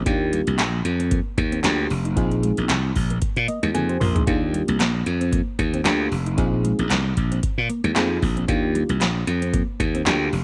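A glassy, growly slap bass sits up front in this danceable, feel-good early-eighties boogie funk excerpt, joined by a punchy electro drum machine with a deep kick, metallic hats and handclaps that carry a tape-warm, roomy sheen. A soft, round FM electric piano with chorus comps through the alternating major-seventh and suspended chords and adds a fill from 3.2 to 4.3 seconds, as the drums drop a fill at 3.7 seconds. Further back, a clean, dark, fingered electric guitar riff shimmers under lush chorus, all set in light digital ambience.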